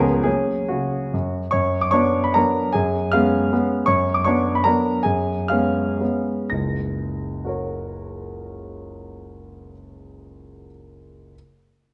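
Heard through a dark production with a moderate recital-hall reverb of 1.5 seconds, this short passage is cut from a longer classical piece. It is a romantic triple-time dance in 3/4 and F# major, tuned to A4 = 436 Hz, with dotted rhythms that give it a proud, rustic character. A clear grand piano plays alone for the full 11.4 seconds, sitting present and up front, and ranges from F#1 to A#6. The rubato feel lets the tempo float between 107 and 168 BPM, and the music slows down from 3.3 to 6.5 seconds. The harmony rests on an F# pedal, moving from F# through Bm/F# and C#7/F# and back again, before returning home to F# at 6.5 seconds.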